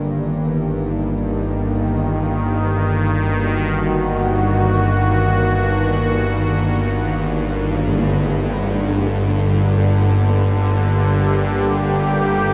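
A tense, string-like drone with vibrato sustains low beneath a bright, airy pad of detuned sawtooth chords, evolving through chorus and shimmer reverb, to open this desolate, unsettling dark ambient excerpt in free time, tuned to A4 = 441 Hz, with the harmony shifting from Ebm to Gm at 7.9 s as a shadowy, close tam-tam sounds briefly in the background, the whole scene set in a vast, wet cathedral reverb.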